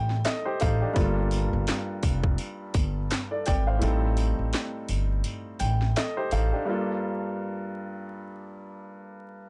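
A woody, thumpy pizzicato upright bass and a warm, filtered, tape-tinged grand piano moving between Am7b5 and Gm7 open this dark, tough boom-bap hip-hop piece in G minor at 84 BPM with a swung 16th feel. They are joined by an overdriven, up-front garage drum kit with a tight kick, cracking snare, hi-hat and handclaps, and a faint jingle of sleigh bells. The kick drops out from 3.8 seconds and the piano plays alone from 6.5 seconds, all captured in a dry, gritty recording with vinyl crackle.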